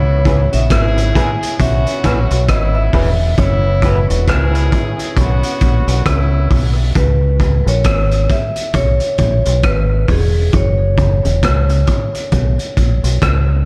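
Deep and hypnotic, this dub reggae excerpt at 67 BPM in C# dorian rides a round, dark fingered bass and a gritty, saturated breakbeat kit with punchy kick, hi-hat and rim click, while a bright, ringing vibraphone carries the melody through tape echo, a vintage horn section with vibrato plays an echoed second line until 6.7 s, a lo-fi, slightly broken-up guitar through a small old amp adds phaser-tinged accompaniment in the background until 4.0 s, and a very quiet, clean semi-hollow guitar picks arpeggios that return at 10.5 s, all set in a dusky small-room production.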